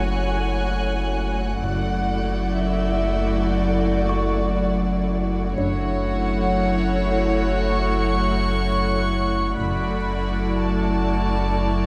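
Uneasy and eerie, this slow 60 BPM suspense cue from a cinematic film score holds on a single F#m7 chord, with a dark, sul tasto chamber violin section carrying the melody over a rich second violin line, a soft-attack viola section, a pure, floating cello section and a round sine sub bass drone up front, while a smooth-topped violin texture and a woody double bass section sit in the background, the double bass entering at 1.6 s and a delicate, tinkling, slightly out-of-tune music box appearing from 4.1 to 8.5 s, the whole cue heard through a wet scoring-stage reverb.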